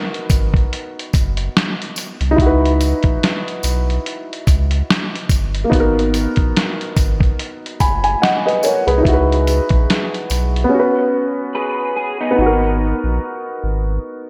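Soaked in a lush hall reverb, this dreamy excerpt from a longer lo-fi hip hop piece moves at an unhurried 72 BPM in 4/4, with a gentle 16th-note swing and a melancholic, reflective mood in G# minor. A woody, slightly detuned upright piano carries the accompaniment through a low-pass filter, cycling between G#m7 and C#m11 before touching Bsus2 and settling back on G#m7. Beneath it, a deep, full sub bass with an added octave holds sustained notes, while a compressed, sampler-style drum kit sits close with a thumpy kick, a medium-tuned snare and hi-hat, all muffled and re-recorded in a large room. A bright, jingly tambourine plays at a low level, and the drums stop at 10.7 seconds. Around 11.5 seconds, an electric guitar through a small old amp slips in briefly with a slightly broken-up, fingered second line, colored by analog chorus, delay and a low-pass filter.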